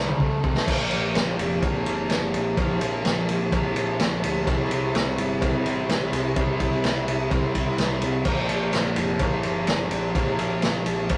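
A drum fill opens this sunny, swaggering classic rock excerpt at 127 BPM, alongside riffs from an overdriven semi-hollow guitar with a bright, spring-reverbed hollow-body tone and a very quiet, tight distorted guitar, over a growling picked bass with overdrive. The up-front vintage kit drives things with a punchy kick, medium-tuned snare, toms and dark crash and ride cymbals, while a faint metallic cowbell joins at 0.2 seconds. The harmony moves from C5 to Bb5, then to C and back to Bb5, and the whole take has the rough, tube-saturated feel of a rehearsal room with light reverb.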